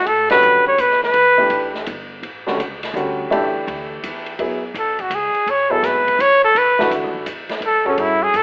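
A smooth-topped trumpet with light vibrato and scooped notes leads this searching, hypnotic modal jazz excerpt at 166 BPM in a swung 3/4, dropping out at 1.7 seconds and returning at 4.8 seconds for a solo over an F#m11 chord, while an up-front baby grand piano comps, a woody pizzicato upright bass sits low, and an acoustic kit with dark cymbals and a boomy kick punctuates a band accent at 0.2 seconds, all heard through a telephone-like filter and a large studio reverb.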